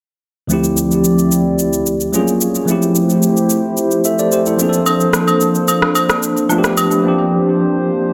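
Amapiano with a soulful, hypnotic mood, built on an up-front tine electric piano with a clean tone and analog delay, over a hollow, flute-like pad whose slow-attack chords shimmer with chorus. An electronic shaker and rim click keep a layered, produced beat until 7.0 s, while acoustic agogo bells and woodblock with a small-room feel appear from 4.9 s, also touched by delay. The echo-heavy mix sits in a moderate echo-chamber reverb as the harmony moves from Dm11 through lush major-ninth chords to a closing C9sus4, in a fragment cut from a longer piece.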